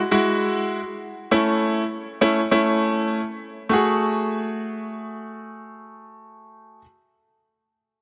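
In a straight, steady 4/4, this short, driving and bittersweet pop fragment features a single bright, up-front baby grand piano with a brilliant, natural, short-sustained tone playing accompaniment in its middle register from 0.1 to 6.8 seconds, moving from Eadd9 to A and arriving on F#madd9 at 3.7 seconds as a new section begins, all set in a lush hall reverb and a dense, heavily limited modern master.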